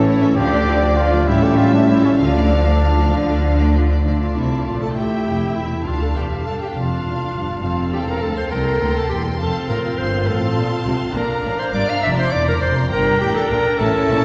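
The bright clarinet stands out most, entering up front at 4.1 s with a smooth-topped second line that carries through to the end of this urgent, dramatic fragment of a quick classical-period movement for symphony orchestra in 6/8. Rich, focused chamber violin sections carry the melody and a supporting second line with vibrato, while the viola section fills in the accompaniment beneath them. A clear cello section sits distantly in the background alongside an intense double bass section, together anchoring the bass line throughout. At the opening, a background French horn section holds warm sustained chords and a mellow solo trumpet adds stabs, both falling away before 4 s. The harmony moves from minor-key tension toward brighter major chords before settling on a Gmadd9, all heard from further back in a concert hall with a long, wet reverb.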